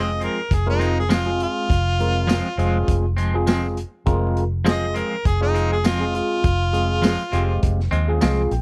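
A clear, up-front harmonica solo opens this smoky soul blues cut from a longer piece, its scooped notes and tongue slaps carrying light vibrato over an overdriven, gritty tine electric piano with phaser, twangy tremolo guitar stabs and a round, foam-muted vintage bass. A crunchy breakbeat kit enters at 0.2 seconds with a tight kick, medium-tuned snare, hi-hat and tambourine, its saturated sound rolled off at the top. The electric piano takes a fill from 7.6 seconds, all captured in a dry, close 1970s-style small room.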